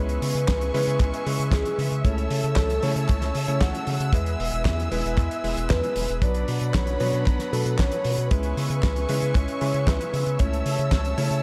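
A deep, round analog bass sits up front in this bittersweet, nostalgic italo disco excerpt, its fast-attack, wave-folded tone thickened by tube saturation. The tempo is a straight 115 BPM in 4/4, tuned slightly low to A4 = 439 Hz, and the harmony moves through C#m7, A/C#, E and Bm. A full-bodied, octave-layered synth lead carries the melody with a sub-octave underneath, its sound colored by vibrato, chorus, phaser and digital delay. Alongside it, a dark symphonic string section holds lush, woody, bowed chords from a distance, while a vintage electric grand piano adds stabs with chorused unisons and a clangy low end. A damped 70s drum kit enters at 0.1 seconds with handclaps, hi-hat and a fat snare under gated reverb, and a tight, dry kick arrives at 0.5 seconds and drops out at 11.0 seconds. The whole mix sits in a light, small-room ambience.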